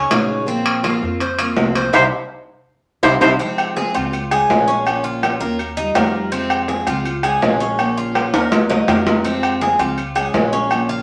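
Danceable and nostalgic, this 11-second cut from a longer Cuban son and guajira piece moves at 164 BPM in a straight 4/4, set in F minor. A bright, picked steel-string acoustic guitar and a metallic Cuban tres, with its double strings and some octave-doubled courses playing arpeggios, carry the harmony from the start, over a woody pizzicato upright bass. Ringing timbales and agogo bells with metal shells sit up front in a live room, adding drum fills at 2.5 and 8.3 seconds. At 1.9 seconds a clear, classical-style clarinet takes a brief solo on a single high note, joined by a very quiet fingerpicked flamenco guitar as a second line, during a band accent that closes the opening section on a C chord. From 3.4 seconds the music cycles through Fm, Db, Bbm and Ebadd9, all bathed in a wet studio reverb.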